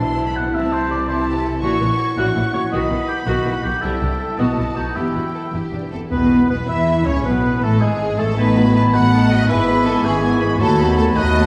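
Moving in a straight 6/8 at 108 beats per minute counted in dotted quarters, this dramatic, urgent orchestral passage is cut from a longer classical piece, opening in E minor before brightening into E major at 6.1 seconds. From the start, a rich violin section carries the melody while a bright, close second violin section and a warm, distant oboe add second lines, a clear viola section accompanies in the background, and a ringing fingerpicked concert harp spins arpeggios. Underneath, smooth, even cello and distant double bass sections anchor the bass with lush bowed vibrato. At the shift to the major key, an airy silver flute and a very quiet, mellow clarinet join with further second lines, a roomy bassoon adds accompaniment, and a dark French horn section holds sustained chords in the background. A brief stroke of hard-mallet timpani marks that arrival, ending by 6.6 seconds, and the whole ensemble sits in a wet scoring-stage reverb with a layer of vinyl crackle.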